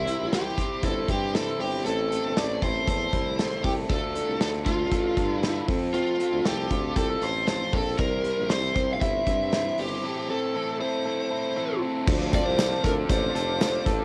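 A lo-fi, lightly reverberant cassette home recording frames this restless, bittersweet excerpt of jangly indie pop in D minor at 117 BPM, where a cranked-amp lead guitar carries the melody up front over a crunchy overdriven rhythm guitar, twangy direct clean arpeggios with subtle chorus, a smooth tuba bass with light vibrato and scooped notes, and a punchy, grainy loose drum kit, until a break at 10.0 seconds gives way at 12.1 seconds to a detuned sawtooth pad with chorus and tremolo and a faint jingling tambourine over a closing Dm7.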